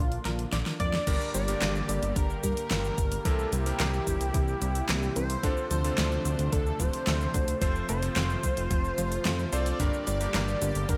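This uplifting, dreamy synthwave excerpt opens with a thick, detuned unison lead carrying the melody over a fat sawtooth bass that sits up front, a smooth, warbling pad with chorus in the background, and a very quiet, round pluck spinning arpeggios. A layered pop drum kit comes in almost at once and plays a fill with gated reverb, bright hats and a fat snare. A thumpy, sampler-style electronic kick joins at 0.8 seconds. At 1.1 seconds a cutting, clangy electric grand piano adds stabs with tape echo as the harmony settles into a steady straight-time groove. The pad and bass both pump with sidechain, while the mellow vibrato of the lead, with its own tape echo, floats over a light reverb.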